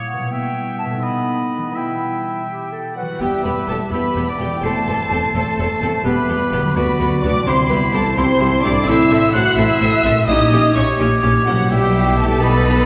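Classical orchestral music, a fast romantic movement in 6/8 at 84 BPM on the dotted quarter, in E minor with a stormy, urgent and dramatic mood, cut from a longer piece. It opens with ringing, fingerpicked harp arpeggios beneath a clear oboe, a roomy, soft-attacked clarinet and an airy, close-miked flute, each carrying a second line. At 3.0 seconds the violins take the melody with lush, expressive vibrato and a smooth top, joined by a second, darker and woody violin line and mellow French horn chords, the most prominent part. From 3.2 seconds intense, bright violas fill in the accompaniment while rich cellos and double basses supply an even, distant bass. The harmony moves from E minor through A minor, C and a diminished chord before settling back on E minor over B, the whole ensemble heard in a wet church reverb with the sound of a large hall.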